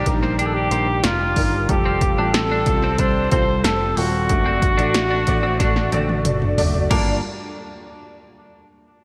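Bright 1980s-style digital production in a lush hall sets this driving, earnest piano-driven pop fragment, where a mellow, vintage trumpet with light vibrato and delay carries the melody up front over clear, polished grand piano with ensemble chorus, a very quiet, detuned sawtooth unison pad, a twangy twelve-string electric guitar riff with analog chorus, round picked electric bass and a punchy analog drum machine with gated reverb that plays a fill from 5.6 s.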